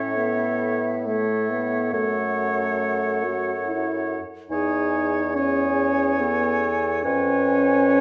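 A wind quintet begins together in a slow, rubato romantic movement in C# minor and 3/4, around 67-73 BPM, its elegiac, melancholic mood led by an airy, hollow silver flute melody with vibrato, while a clear oboe carries a second line and a present clarinet sits in the background of the accompaniment. A French horn with light vibrato adds warmth to the accompaniment, and a bassoon, set up front, supports the bass as the harmony moves from A through F#m and C#m/E to C#7/E#. The passage, cut from a longer piece, sounds in a reverberant recital hall and is tuned slightly low at A4 = 437 Hz.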